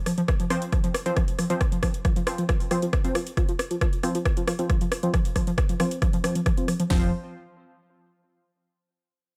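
Driving peak-time techno at 136 BPM, hypnotic and dark, where a screaming, guitar-like overdriven lead riff with tape echo and a filter sweep pumps against two layers of electronic drums (punchy kick, cracking snare and metallic hats up front), detuned supersaw stabs through cassette tape, a low-pass filter and analog delay, and a growling FM bass that surfaces only at 6.9 seconds, all in a dry, gritty recording with transformer saturation.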